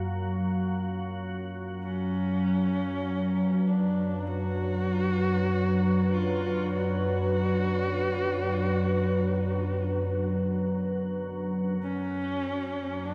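Dark ambient drone with an unsettling mood, in which an up-front, calm, detuned organ-like drone with ensemble chorus and a deep, moody sawtooth analog pad with a sub octave and chorus sustain from the start, joined at 1.8 s by a husky, expressive bowed horsehead fiddle melody with vibrato, portamento and analog delay, the whole mix sitting in plate reverb and echo-heavy studio ambience in this short passage cut from a longer piece.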